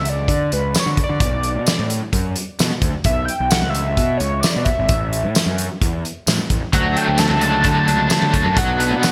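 Indie rock at 130 BPM in D major, carefree and jangly, where a screaming, detuned sawtooth synth lead with distortion, chorus and vibrato carries the melody over a growly fuzz bass and a loose, up-front drum kit with a fat snare, tight kick, hi-hat and tambourine in gated reverb, until two picked, overdriven guitars, one a cranked stack with tremolo and the other crunchy with subtle chorus, join the riff at 6.7 seconds, all set in a lush hall with bright 1980s-style digital production in this excerpt from a longer piece.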